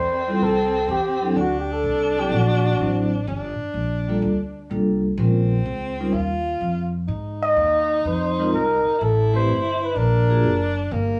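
Heard from further back in a studio with a wet, short reverb, this relaxed, playful small-group swing and bop fragment moves at 126 BPM in 4/4 with a loping swung-eighth feel. A bucket-muted trumpet carries the melody up front, its veiled, raspy tone full of vibrato, scooped notes and a growling edge. It plays an opening phrase that stops at 3.1 seconds, then returns at 7.4 seconds. Beneath it a clear alto saxophone weaves a second line with a soft attack and vibrato. A woody, thumpy upright bass with gut strings sits close, plucked low in its register. A vibraphone struck with medium mallets adds ringing, metallic chords with a medium motor vibrato, moving through harmonies such as Fmaj7, Bbm9 and Ab6 before landing on Daug.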